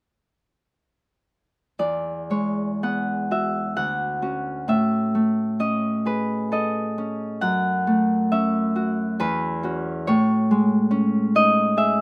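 Close, detailed microphones and a light reverb put a single Celtic harp up front, its bright, ringing acoustic strings caught in fine detail. This is a dreamy, graceful classical piece for solo harp in E major, tuned to A4 = 441 Hz, moving in a rubato 3/4 at roughly 55 to 71 BPM. The fingerpicked harp plays alone from 1.8 to 12.0 seconds, spanning D2 to F#5. Its harmony drifts from Eadd9 through Dmaj7 and Amaj7#11 to F#m7, then Esus2, before settling back on Amaj7#11 at 10.1 seconds. The brief passage is cut from a longer piece.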